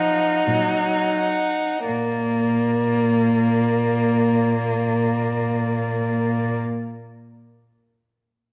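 A second violin stands out up front, its rich, airy sul tasto line glowing beneath a dark, woody first violin that carries the melody with vibrato, while a cello, also up front, holds a soft, intimate bass on Bb and a viola sits in the background. This slow, rubato classical movement for string quartet in Bb major feels serene and warm, easing from an Ebm/Bb chord into Bb as it slows over its first 1.9 seconds. The whole short excerpt rests in a wet recital hall and is coloured by worn, warbling old cassette tape with drifting pitch.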